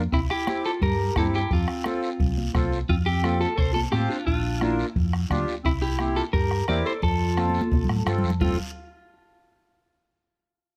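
This is a danceable, festive cumbia, a short cut from a longer piece. An up-front accordion with a reedy tone and slow beating lays down the accompaniment over a dark, round, amped hollow-body electric bass played with the fingers. A clean, compressed electric guitar picks out the melody with spring reverb and slapback echo, while a breathy clarinet carries a jazz-style second line with vibrato, scooped notes and a smooth top. The percussion sits close and dry: a bombo struck with a soft beater, warm high-tuned congas with thick skins and soft hands in the background, and a raspy guiro. The harmony moves from C7 through F and Bb and back again, and a drum fill from 7.4 to 8.4 seconds leads into a new section, captured with close, detailed microphones and little room reverb.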